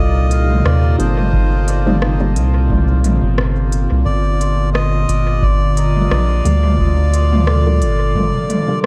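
Ambient dub with a hazy, spacious mood, cut from a longer piece and built on a dark production that moves from Cm7 to Gm7 at 4.1 seconds. A reedy, nasal melodica carries the melody through tape echo, while an airy pad with chorus and phaser, a vibraphone played with soft mallets, and a glassy, drifting harmonics texture sit in the background above an up-front, round sub bass. An overdriven electronic drum kit with smooth hats and dub echo enters at 0.3 seconds, joined by a dry, deep electronic kick at 1.3 seconds, and a very quiet, muted filtered chord stab appears in two brief spots.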